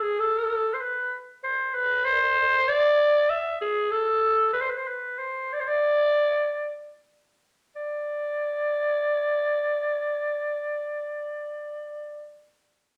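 A moderate, large studio reverb with a 0.8-second decay surrounds a lone clarinet placed up front in this short klezmer passage, cut from a longer piece. The mood is bittersweet yet festive, moving in 3/4 with a straight feel at a tempo between 72 and 97 BPM, tuned to A4 = 442 Hz. The clarinet carries the whole recording by itself, its growling, gritty tone touched with rasp, light vibrato and scooped notes that give it a vintage, jazz-style character. Its line stays within a compact range from G#4 to E5. The pace slows from 3.6 to 7.7 seconds, where the opening section gives way to a second one that runs to 12.7 seconds, with the clarinet stopping at 12.4 seconds.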